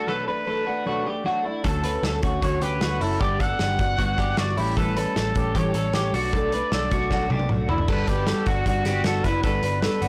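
A distant, punchy trumpet with light vibrato and scooped notes carries the melody in this youthful, nostalgic jangly indie pop passage cut from a longer piece, set over bright, twangy twelve-string electric guitar arpeggios with lush chorus and a full-bodied fingerpicked acoustic guitar, with a dark, round muted bass and an up-front, loose small-room drum kit entering at 1.6 seconds and a drum fill at 7.1 seconds, all heard through a blown-out, overdriven recording.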